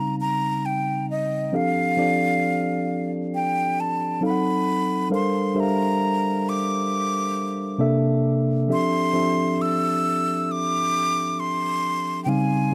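A breathy jazz flute with soft attack and expressive vibrato carries the melody up front over mellow tine electric piano chords in this relaxed, soulful R&B excerpt at 67 BPM in F major, swung on the sixteenths and moving through lush extended harmonies like Dbmaj9#11, Gm11 and C13 before settling on Fmaj13, all captured as a dry, close 1970s-style studio recording with a moderate booth ambience.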